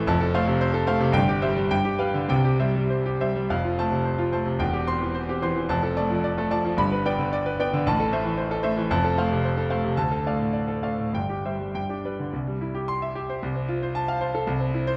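Pulled by rubato in 2/4 at 97-117 BPM, this heroic, brilliant classical piano study in C major is cut from a longer piece, with a clear grand piano playing alone and up front across a range from E1 to C6. Its smooth, vintage tone has a short sustain, set in a wet recital hall with a dark production. Chords move from F through C/G and G7 to C before a longer passage opens at 3.5 seconds, and a new section begins on C at 12.3 seconds, resting on F/C.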